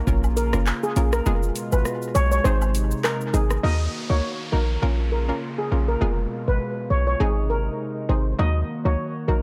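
A booming, echo-heavy dancehall excerpt in Eb minor at 101 BPM with a swung sixteenth feel, tough and bouncy, built on a deep, up-front 808-style bass, a hollow, nasal square-wave pluck with chorus, and a vintage, warbling analog pad that pumps against the sidechain. A mellow, shimmering steel pan carries the melody with tape echo from 0.4 seconds, while the analog drum machine, with its deep kick and metallic hats, plays alongside close, dry woodblock and cabasa until about 3.6 seconds; its kick drops out from 1.3 seconds. From 3.6 seconds an electronic downlifter sweeps beneath the pan, pluck, pad and bass as they cycle through Ebm, Bbm, Fdim and Ab.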